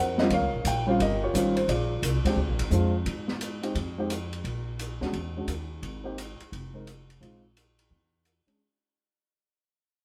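A dark, mellow upright piano carries the melody up front with long sustain, leading a relaxed, sophisticated jazz trio at a brisk 174 BPM in 4/4 with a swung eighth-note feel. Beneath it, a woody pizzicato upright bass sits close and present while a smooth open drum kit with a high-tuned snare, boomy kick, ride and hi-hat enters at 0.2 seconds. The band plays live together in a stone room with moderate reverb, moving through harmonies like Eb13 and Bb9 before the music fades out from 3.1 seconds to the end of this fragment of a longer piece.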